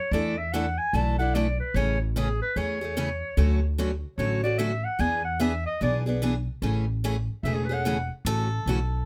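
A clear, vibrato-laden clarinet with scooped notes solos in jazz style from the start of this swinging, playful jazz manouche excerpt, backed by a bright, boxy parlour-style picked steel-string guitar and a woody, thumpy pizzicato upright bass on gut strings through a lilting Amaj7-Dmaj7-E7 progression, before a fresh-stringed swing guitar takes a brief melodic turn at 8.3 seconds under light reverb.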